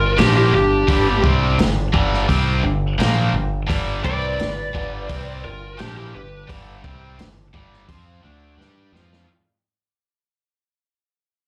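An overdriven slide guitar played with fingerpicks leads this fragment of a longer live blues rock and southern rock performance, heard through a club PA. It rides over a double-tracked, bright, compressed electric guitar riff on a G5 chord and a growling, overdriven fingered bass, with a vintage drum kit joining at 0.2 seconds. The mood is driving and swaggering at 86 BPM in a straight 4/4, tuned slightly flat to A4 = 438 Hz. Slapback echo colours the slide and riff guitars, while a second, picked lead guitar sits in the background through a small cranked amp with overdrive, slapback and analog delay. The drums are muffled and lo-fi, with a punchy kick, a medium-tuned snare and a rolled-off top. Both the slide and the background lead stop at 6.5 seconds, and a drum fill arrives at 8.6 seconds as the whole passage fades out.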